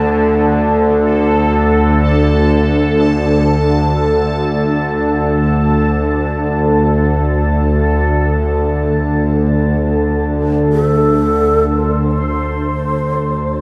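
Dark ambient drone in free time, ominous and unsettling, built on a tense, string-like bowed drone with ring modulation and vibrato sitting up front, while a bright, bubbling synth texture of detuned sawtooth tones with resonant, random filter steps and chorus fades out over its opening stretch. At 10.7 seconds a breathy, mellow bamboo shakuhachi enters with a soft attack, its vibrato-tinged phrase haloed in shimmer reverb and diffuse delay. From 11.7 seconds a filter sweep moves across the drone until this cut-off passage ends, and a cavernous cathedral reverb wraps the whole space throughout.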